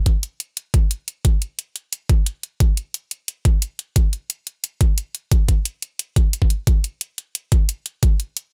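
A knocking electronic kick drum leads this short drum and bass cut, overdriven, layered and sitting up front in the mix. Bright electronic hi-hats ride alongside it, also overdriven and layered, placed close and forward, though they sit lower in level than the kick. Both parts carry the boxy character of being re-recorded in a small room, which gives the processed sounds a gritty, physical edge. The feel is straight in 4/4, and the mood is aggressive and tense from the first beat. The sound is dry, with little reverb. The two drum parts enter together at 0.1 seconds. The kick stops at about 8.1 seconds, and the hats carry on until about 8.4 seconds, shortly before this fragment of a longer piece ends.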